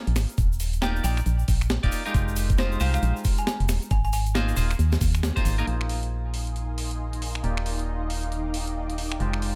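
The recording sounds dry and close, a short cut from a longer UK garage track with a skippy, bouncy two-step swing. An up-front, hollow, organ-like FM bass anchors it with dark, decaying notes, while a knocking, layered electronic kick and a gritty, compressed sampler-style kit of finger snaps, hi-hat and high-tuned snare drive the groove, with a grainy egg shaker sitting in the background. A bright, clean semi-hollow electric guitar plays stabs through spring reverb, delay and a low-pass filter, and a woody marimba struck with hard mallets carries a rustic melody with delay in the opening section. The band hits an accent at 5.2 seconds, and the kick and shaker drop out soon after as the second section opens. From 6.2 seconds an ethereal, airy pad with chorus, tremolo and sidechain pumping holds sustained chords over a cloudy, evolving granular pad that pumps as well.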